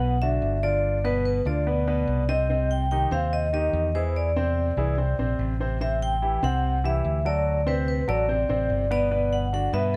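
Lightly reverberant and sunny, this danceable Afro-Cuban jazz clip in G major moves at 145 BPM, with a ringing, metallic vibraphone carrying the melody under medium hard mallets and fast motor vibrato, an intimate, clear baby grand piano accompanying up front with audible action noise and long sustain, and a punchy, amped fingered electric bass anchoring the low end through changes that run from Gmaj7 through Cm and Eaug7 back to Gmaj7 at 9.1 seconds.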